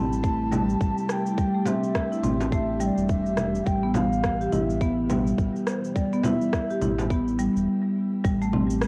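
Organic downtempo in A minor at 105 BPM with a 16th-note swing, hypnotic and mystical, where an up-front, woody marimba plays arpeggios through cassette tape, tape echo and shimmer reverb over an airy, detuned pad with chorus and sidechain pumping, a round, deep analog bass, overdriven electronic cabasa, congas and rim click, and a tight, overdriven kick, while a breathy bass bansuri with vibrato carries the melody until 6.8 seconds and a small, bright frame drum sounds from 1.7 to 7.1 seconds, all on a home cassette recording moving from Am7 to Em/A.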